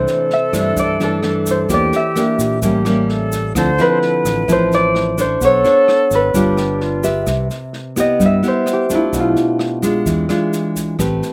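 Bossa nova with a breezy, romantic air, built on a ringing concert harp melody with a slapback echo, a pure, hollow flute carrying a second line with vibrato until 7.3 s, and an up-front, full-bodied nylon-string guitar fingerpicked underneath, finger squeak and all. A round, fingered electric bass sits below, while an airy jazz kit of boomy kick, rim click and snare joins a grainy, bright shaker in the background. From 7.3 s the harp takes a solo over rich jazz chords, and the dry, outdoor sound gives this short cut from a longer piece a close, intimate feel.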